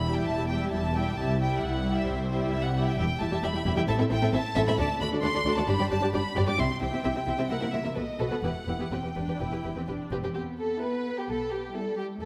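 Graceful and spirited, this quick classical-period string orchestra excerpt in E minor at 132 BPM sets a sul tasto first violin melody with light vibrato over a focused, up-front second violin line, lush viola accompaniment, cellos gliding with portamento and a dark double bass section, all in a moderate scoring-stage reverb, as the harmony moves from Em through Am, D and G to a B7 that returns home to Em.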